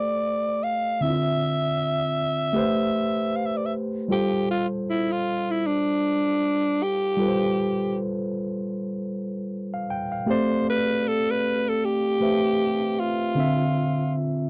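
Swung sixteenths at 78 BPM in 4/4 carry this bittersweet, smooth soul fragment, where a worn, slightly out-of-tune tine electric piano heard through built-in speakers moves through Am7, Dm9 and G9sus4 chords beneath a bright, raspy, growling alto saxophone whose vibrato-laden pop-style melody turns into a solo at 4.1 seconds and stops at 14.1 seconds, both parts sitting up front in a dry, close 1970s-style studio sound with light reverb.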